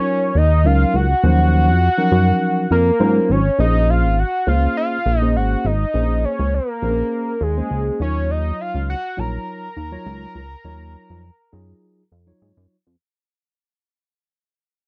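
Early-eighties boogie funk at 102 BPM in a straight 4/4, this danceable, funky piece is cut from a longer work and fades out from 3.6 s to the end. A fat, detuned analog lead carries the melody up front, its sawtooth and square-wave tones reinforced by a sub octave and touched with vibrato. Beneath it, a mellow tine electric piano supplies clean, direct accompaniment. A chorused synth bass enters at 0.4 s, dark and glossy, with a retro pulse-wave character shaped by pulse-width modulation, ring modulation, wave folding and a filter pluck; it sits loudest in the mix. The harmony moves from Ebm9 to Bbm9 and back to Ebm9, and the dry, close studio sound keeps every part intimate and present.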